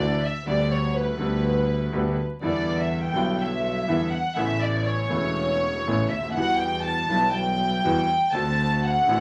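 Passionate and tense, this 9.2-second tango excerpt at 122 BPM in 4/4 moves with a rubato feel as an up-front, bowed violin section plays sul tasto with a floating, smooth top over a clear concert grand piano with deep bass and a dark double bass bowed by one player with an airy, boxy tone, all set in a wet studio ambience with vinyl crackle as the harmony passes from G/D through Em7, Aadd9 and Emadd9 to D7.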